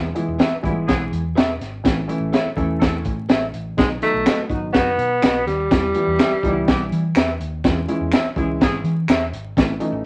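A cut with light reverb, vinyl crackle and a faint mains hum, taken from a longer uptempo 1960s-style soul piece at 124 BPM in a straight 4/4, danceable and uplifting, moving through E, A, B, Em and C#m. A crunchy, saturated breakbeat kit sits up front with a punchy kick and high-tuned snare, over a round, hollow-body picked electric bass, a woody, slightly detuned upright piano with audible action noise, slightly broken-up lo-fi guitar stabs through a small old amp, and a mellow, vintage horn section playing a second line with light vibrato. A breathy, whispered tenor saxophone takes the melody with subtone and scooped notes from 3.8 to 6.9 seconds, while finger snaps join in the background from 4.3 seconds.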